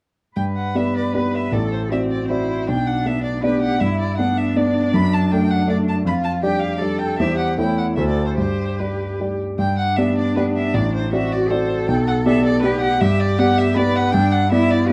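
At 0.4 s a violin, cello and grand piano begin together in this lively, cheerful classical-period movement for piano trio in G major, moving at a quick 158 BPM in 3/4 with a rubato feel. The focused, bowed violin carries the melody with vibrato, the smooth, even cello adds a second line, and the up-front, vintage-toned piano supplies accompaniment, while the strings sit more distant. Light reverb gives the dark, warm production its glow, and the opening section returns at 9.6 s in this passage cut from a longer piece.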